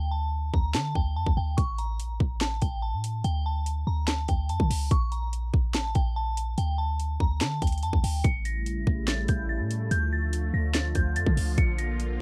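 A half-time trap groove at 144 BPM in D harmonic minor drives this melancholic, menacing hip hop excerpt, where a hard-clipped kick, sharp snare, metallic hats and handclaps enter at 0.5 seconds up front over a deep, boomy sine 808, while a glassy FM bell carries the high melody through chorus, low-pass filtering and slapback echo, and a detuned sawtooth pad joins with sustained chords at 8.2 seconds, all in light reverb.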